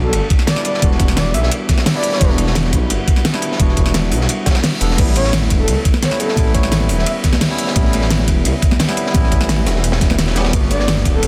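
A swelling, detuned sawtooth bass sits up front in this dreamy, rolling liquid drum and bass excerpt at 173 BPM, its saturated unison tone evolving through filter swells with a faintly menacing edge. A bell-like tine electric piano plays clean, bright accompaniment with delay throughout, moving from Em9 to A9 at 5.0 seconds and on to Gmaj9 at 10.5 seconds. A soft, breathy flute-like synth lead floats a sustained melody with vibrato in short phrases, carried by chorus, delay and a cassette-tape colour. The drums stack a knocking electronic kick, a pop kit with a fat snare and crisp hats, and a quieter, gritty breakbeat kit with dark cymbals, a high-tuned snare and a rolled-off top, all touched by studio reverb. Very quiet congas with soft hands join at 5.0 seconds. Light reverb and small-room ambience frame a dense, heavily limited modern master, and the recording is cut from a longer piece.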